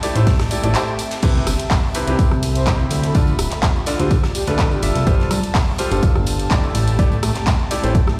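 Heard through a big sound system in a bare room with a large studio reverb, this soulful, energetic piano house cut moves at 125 BPM in A minor, with a bright, brilliant concert grand riff pumping against the kick and trailing dub echo over Am7, Cmaj7, Dm7 and G9sus4 chords. A fat, saturated analog bass with detuned sawtooth bite sits up front beside a punchy, tape-warm electronic kick, while a dry analog drum machine supplies handclaps, hi-hat, ride, crash and rim clicks, backed by a very quiet gated 80s kit, a close tambourine and an airy, chorused pad in the background. From 2.6 to 4.9 seconds a soft, flute-like synth lead with vibrato and lush chorus drifts in behind the groove, and a brief break arrives at 0.7 seconds.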